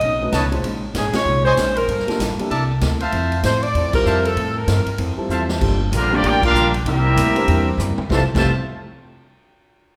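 A buoyant swing groove carries this joyful, brassy big band jazz clip, driven by a natural-sounding drum kit with a punchy kick and a woody, thumpy pizzicato upright bass, with a mellow upright piano and a clean, hollow-body archtop guitar filling in behind. A tight, close-miked saxophone section leads the melody up front while a trumpet section punctuates with present stabs, and ensemble accents hit at 1.1, 3.9 and 6.4 seconds. After a drum fill, a brilliant, vintage-toned trumpet section takes over the tune with light vibrato over a clear trombone line in the background, all bathed in the wet reverb of a recital hall.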